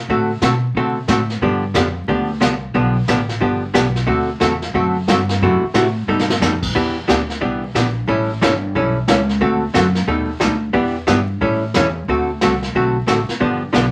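Playful and down-home, this short cut from a longer western swing country piece moves at a brisk 180 BPM in 4/4, swinging its eighth notes in D mixolydian. An upright bass, plucked on gut strings, gives a woody, thumpy low end. Out front, a clean, picked hollow-body archtop guitar, miked through an amplifier and compressed, plays a dark accompaniment through a dominant-flavored progression that passes through D7, G7, F#m7b5, Baug7, Em7, A7 and an altered B7. A vintage kit played with brushes adds a medium-tuned snare, punchy kick, hi-hat and dark crash cymbals with a rolled-off top, and breaks into a brief fill at 6.1 seconds. The sound sits in a moderate studio room with a natural ambience and a layer of vinyl crackle, and the opening progression starts over again at 12.1 seconds just before the cut ends.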